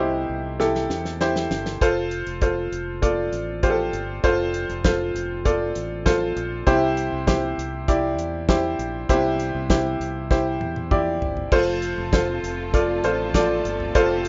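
A straight 4/4 pulse at 99 BPM drives this warm, anthemic piano-driven pop excerpt in F major, tuned to A4 = 441 Hz. A bright, woody upright piano sits up front with accompaniment through plate reverb, while a round, amped fingered electric bass anchors the low end. A damped 70s drum kit, with a dry, medium-tuned snare, tight kick, hi-hat, toms and crash cymbal, enters at 0.6 seconds with a fill, and another fill arrives at 10.3 seconds. The harmony shifts between C and F, and at 11.5 seconds a lush, distant bowed string section adds smooth sustained chords with vibrato, also in plate reverb. The mix has the feel of a rough home demo, with a muffled top end and a short, wet room sound.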